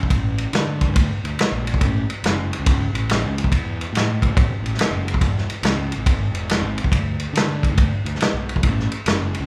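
A punchy vintage drum kit with dark cymbals, a medium-tuned snare and a rolled-off top leads this raunchy, gritty blues rock and southern rock excerpt in A major at 141 BPM with a swung 4/4 feel, joined from 0.1 s by a round, overdriven fuzz bass played with the fingers, the pair sounding like a band playing live in one large room with moderate reverb.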